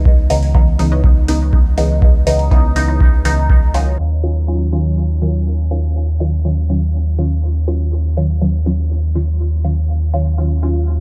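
Dub techno in a meditative, cavernous mood, this excerpt from a longer piece sets muted, evolving sawtooth chord stabs with phaser, sidechain pumping and dub echo over a round, up-front sub bass that also pumps, while a deep analog kick plays only until 3.6 seconds, metallic hi-hats tick quietly throughout, a very quiet second stab riff appears briefly near the start, and a filter sweep from 4.0 seconds carries the dark, dry production as the chords move from Dbm9 to Ebm9.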